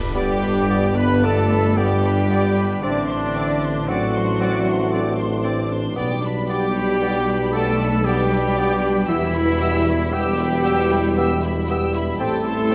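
A lyrical, tender orchestral passage in a rubato triple metre opens with violins, violas, double basses and low brass together: a warm violin section sings the melody over a second violin line, lush violas, softly blended French horns and trombones holding chords, and a tuba and double basses anchoring the bass. Within 0.2 seconds a pure, silvery flute, a clear oboe with a faint vintage tint and a mellow clarinet add second lines, while a very quiet bassoon adds accompaniment, a tight trumpet section adds stabs and a dark cello section fills out the bass. The whole ensemble sits in a reverberant concert hall, and the passage moves gently from G toward A minor seventh before it is cut off.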